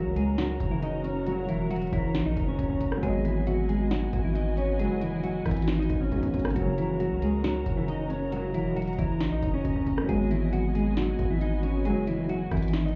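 A clean, compressed electric guitar carries the melody from the first moment, its fingered lines colored by analog chorus and digital delay and placed up front, over a dark, mellow concert grand piano in the background, lush bowed strings holding sustained chords with vibrato, and a saturated, aggressive 808-style bass with a noise layer and fast attack. This is a menacing, melancholic trap excerpt in G# minor at 136 BPM, felt in half-time, with the harmony alternating between F# and G#m7. The electronic trap kit enters at 0.2 seconds, its sharp snare, crisp hi-hats and rim clicks roughened by a vintage 12-bit sampler grit. At 1.3 seconds a classical-style brass ensemble adds stabs with digital delay, sitting in the background. The whole mix sounds muffled, as if heard through a wall, set in a moderate recital hall reverb blended with club reverb and small room ambience.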